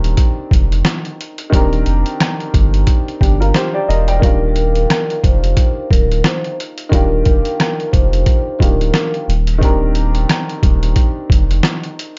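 A gritty, pitched-down sampler-style drum kit sits up front in this dark, reflective boom-bap hip-hop excerpt, its compressed hits re-recorded in a small room, with a thumpy kick, a medium-tuned snare, rim clicks and hi-hat swinging in a loose 4/4. Beneath it, a soft dub sub bass adds a deep, round low end with a fast attack and sustained notes. A dark baby grand piano carries the accompaniment through the whole clip, its worn, boxy tone filtered at both ends and close enough that the action noise is audible. From 4.2 to 9.1 seconds, a vibraphone played with soft mallets takes a brief melody, metallic and ringing with a fast motor vibrato and a trail of tape echo, as the harmony moves from Cm7/Eb to Ebmaj9 and back. The mix is dry and intimate, with a muted top end that keeps the mood dark and reflective.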